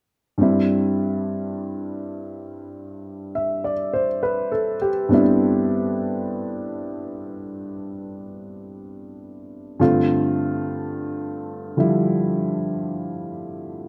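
A slow swing at 51 BPM in 4/4, with eighth notes leaning at a 68% swing, sets an unhurried, late-night pulse for this short jazz fragment in C major, cut from a longer piece. A warm concert grand piano carries the whole passage as accompaniment from 0.4 to 13.9 seconds, spanning G2 up to E5. It opens on a Cmaj9/G chord before moving to G7sus4 at 9.8 seconds. The piano sits up front and intimate, with deep bass, a natural tone and audible action noise that brings the listener close to the instrument. Captured outdoors, the sound has little sense of a room, touched only by light reverb, and the mood stays late-night and tender throughout.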